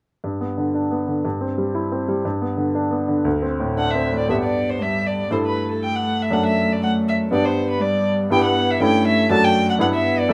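A quick, spirited classical-period movement for piano trio in G major, cut from a longer piece, moving at 120 BPM in 2/4 with a lively rubato feel. A bright concert grand opens alone at 0.2 seconds, carrying the accompaniment with a brilliant, slightly worn tone and deep bass, sitting present and up front. At 3.8 seconds a single dark, woody violin takes the melody, bowed with vibrato and heard up front despite a distant quality. The cello follows at 4.3 seconds as a second line, one player bowing sul tasto with a soft attack, airy bow and smooth top, sounding intimate and close. The harmony centres on G, moving through chords such as C/G, D5, D/F#, Em/G and A7/G. Close, detailed microphones and little reverb keep the dry room sound clear and immediate.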